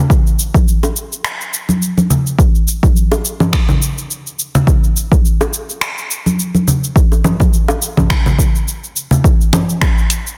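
Downtempo groove at 105 BPM in 4/4 with a 16th-note swing, warm and earthy in mood, built entirely from rhythm. A punchy, layered electronic kick sits up front beside a produced deep house kit of finger snaps, hi-hat, shaker and congas, with soft clipping on its snare. Close, dry hand-played congas and bongos with a hard attack join at 0.6 seconds and drop out at 9.2 seconds, all in light digital ambience under a dense, heavily limited modern master.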